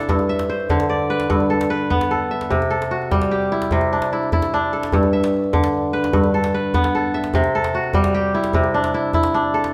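A ringing, crisp kora leads this short excerpt of West African traditional music, its fingerpicked arpeggios sitting up front and spanning G2 to E5 over a hypnotic, warm 12/8 groove at 99 BPM. A tight, cracking djembe played with hard hands enters at 0.1 seconds and sits close beneath it, while the harmony alternates between G and C. The band plays live together in a large studio room with a moderate reverb.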